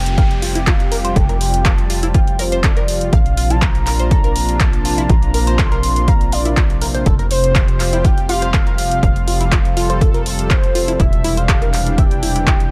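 A punchy, overdriven electronic kick anchors this hopeful, uplifting progressive house passage alongside an overdriven deep house kit of handclaps and hi-hat and a tight, nasal sequencer bass with sidechain pumping, while a downlifter sits in the background for the first 3.1 seconds. Above them, a plucky, detuned sequenced synth plays arpeggios through chorus and delay, and a lush, thick unison pad holds sustained chords moving from Fsus2 to Bbadd9, back to Fsus2 and on to Cadd9/E. On top, a velvety, smooth synth lead sings the melody with vibrato, portamento and dub echo, all in a dry, close sound.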